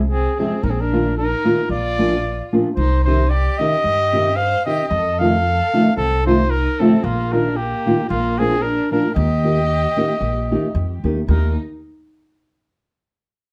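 A warm, classical-style solo trumpet leads this festive, proud mariachi piece in Eb major at 113 BPM with a light swing, backed by a clear, bowed violin with vibrato on a second line, a small thumb-plucked nylon-string guitar and a dark, woody pizzicato upright bass, heard from further back in a wet studio room as the chords move from Fm through Bbsus4, Cm and F7 before reaching Eb at 9.1 seconds.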